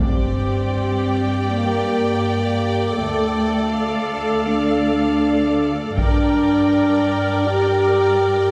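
Epic and dramatic, this brief excerpt of cinematic orchestral film score unfolds in free time, with a dark, soft-attacked French horn section holding sustained chords up front over rich, focused cellos and very quiet, distant double basses that fall away at 6.7 s, while lush violas, a violin melody and a clear, intense second violin line sing with vibrato, a huge, bright but very quiet impact opens the passage, and hard-stick taiko drums strike from 6.0 s to 7.4 s, all set back in a wet scoring-stage reverb as the harmony moves from Gm to Dm and home to Gm.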